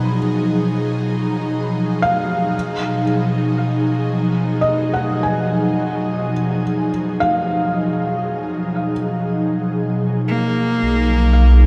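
An airy, detuned pad sustains Bmaj7 and then F#sus2/B chords under soft, felt-muted upright piano arpeggios, whose hammer action is audible through shimmer reverb and a diffuse delay, setting a serene, luminous ambient mood at 58 BPM. A rich, bowed cello enters at 10.3 seconds with a smooth, vibrato-tinged line, joined at 10.8 seconds by a deep, round sub bass. The whole excerpt sits in a wet cathedral reverb.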